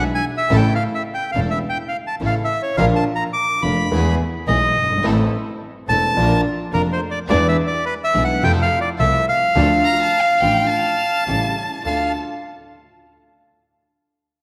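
Tango in D minor at 106 BPM, played rubato in 4/4, this melancholic, tense passage is cut from a longer piece. A reedy, bright bandoneon carries the melody up front, ranging from Bb4 to D6 over a dark, mellow grand piano accompaniment with long sustain and a vintage character. A bowed double bass, nasal and boxy with vibrato, anchors the low end, while a rich chamber string section adds earthy, bowed stabs in the background. At 9.8 seconds a close, expressive violin enters with a second line, its bowed tone marked by vibrato, soft attack and portamento. The harmony moves through chords such as E7, Bb, Am and Fmaj7 before reaching A7 and resolving to Dm at 11.8 seconds, all set in a concert hall reverb that lends the ensemble a spacious, wet sheen.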